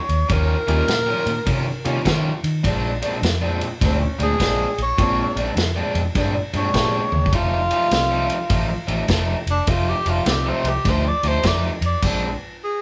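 Electric blues shuffle at 102 BPM in a swung 4/4, soulful and swaggering, moving through Eb9, Bb9 and F9 chords in Bb mixolydian in this short cut from a longer piece. A warm tenor saxophone takes the solo from the opening second to the end, up front with light vibrato, soft attacks and scooped notes in a jazz style. Beneath it, a dark, round, foam-muted fingered electric bass and a vintage drum kit with a tight kick, medium-tuned snare, rides, crashes and toms hold the groove, the kit sounding rolled-off on top, with a drum fill at 7.0 seconds. An overdriven semi-hollow guitar plays a bright picked riff, while a metallic, jangly tack piano sits in the background with percussive accompaniment until 10.6 seconds. The band plays live together in one room with moderate large studio reverb, and the music halts on a stop at 12.0 seconds.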